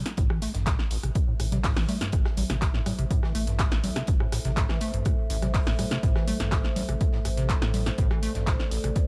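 This driving, gritty acid house cut runs a straight 4/4 at 123 BPM in A minor, anchored by a punchy, tape-warm electronic kick and an analog drum machine playing congas, handclaps, hi-hat, rim click and snare, its snare, clap and hats sitting in a short room, with a very quiet acoustic studio kit adding hi-hat and a medium-tuned snare underneath. A squelchy, resonant square-wave acid bass riff with subtle chorus and a filter sweep through the whole passage rides over a deep, round analog bass holding A1, both pumping against the kick. From 1.4 seconds a dark, detuned analog pad with slow attack, chorus and phaser sustains a moody A minor chord, all in a dry mix with little reverb.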